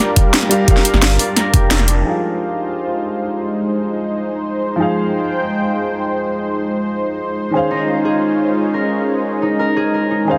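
A dense, heavily limited master with a faint mains hum and a moderate plate reverb frames this melancholic, rolling liquid drum and bass passage, cut from a longer piece. It opens on a drop, where an overdriven, knocking electronic kick and a layered kit with a cracking snare and bright hats sit up front from 0.2 seconds, re-recorded in a small room and filtered. A deep, full sub bass with an octave layer joins them briefly, and the band hits an accent just before the beat falls away at 2.0 seconds. Throughout, a lush, thick unison pad of detuned sawtooth voices sits up front, holding sustained chords with chorus and sidechain pumping, warbling with a vintage brightness. A dark, worn baby grand piano with audible action noise and a boxy, intimate tone plays accompaniment through delay and a low-pass filter, and a filter sweep runs across it for the rest of the passage. A thumb-plucked concert harp rings out arpeggios through dub echo, pausing after 4.7 seconds before returning as the harmony moves from minor sevenths to a suspended chord.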